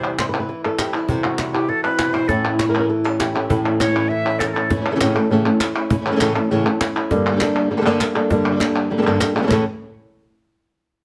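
Close, detailed microphones in a moderate large studio reverb frame this mournful, dramatic flamenco excerpt, where a dark, thumb-plucked flamenco guitar carries the melody up front while a breathy, reedy jazz flute with vibrato adds a second line until 4.7 seconds, a second fingerpicked flamenco guitar with fresh strings sits in the background playing stabs, and a snappy, dry cajon struck with hard hands plays alongside crisp, saturated palmas hand claps underneath.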